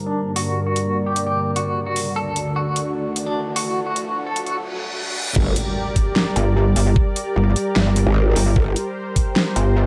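Two detuned, chorused pads, one lush and sawtooth-thick, the other lo-fi and nostalgic in the background, open this aggressive, menacing slice of heavy wobble dubstep at 150 BPM in half-time. A bright, twangy clean electric guitar with tremolo and dub echo carries a filter-swept melody over a huge-snared kit with metallic hats that enters at 0.4 s. A build-up of riser and reverse cymbal follows until the drop at 5.4 s lands in G minor with an impact, a knocking electronic kick, bursts of growling formant-filtered bass and, from 6.4 s, a pulsing, saturated pluck wobble bass on G1.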